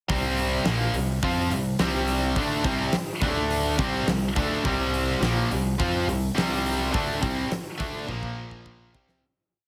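This is a short, complete hard rock piece with a menacing, heavy mood, built entirely on a single riff in a straight 4/4 feel. Three bright, picked electric guitars play the power-chord riff together: a tight distorted guitar sits up front, while a compressed, scooped distorted guitar and a double-tracked overdriven guitar fill out the background. An upright bass played pizzicato, woody and thumpy on gut strings, drives eighth notes beneath them and doubles the guitar riff. A huge arena drum kit with a fat snare, punchy kick and hi-hat sits up front with a big rock groove and a hall-like character. The harmony moves between C5, D5 and Bb5 power chords. The piece fades out from 6.9 seconds, with a drum fill from 8.1 seconds carrying it to the end, all heard through light reverb and a heavily compressed, radio-like sound.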